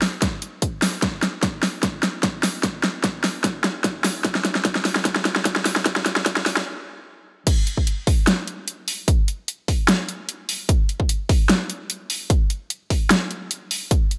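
A half-time dubstep groove drives this heavy, chaotic drums-only excerpt, where a layered electronic kit with a huge snare, bright hi-hats and crashing cymbals tears through a drum fill over a punchy, up-front electronic kick until a sudden stop at 6.7 seconds, then the drop hits at 7.5 seconds, all set in light reverb and a digital ambience with a high-pass filter.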